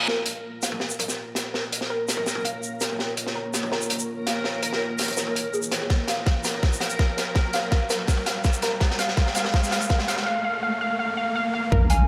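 Half-time drum and bass with a dark, cinematic mood, this cut from a longer piece is one long build-up over a single minor chord. A deep, moody ambient pad holds sustained chords with slow-attack detuned saws, chorus, built-in reverb and sidechain pumping, while a reversed, dreamy granular texture sits in the background and a warbly, lo-fi pluck spins arpeggios through chorus and digital delay. A crunchy breakbeat kit of hi-hat, shaker, high-tuned snare and toms plays a fill up front, saturated and gritty with a rolled-off top. A tight, layered electronic kick joins at 5.9 s, and filter sweeps on the pad and pluck run alongside a reverse cymbal, riser and sub drop. At 11.7 s an impact lands with a deep, compressed wobble bass, and a soft, pure FM bell with phaser and 12-bit sampler grit chimes at 11.9 s, all set in a moderate plate reverb with bright 1980s-style digital production.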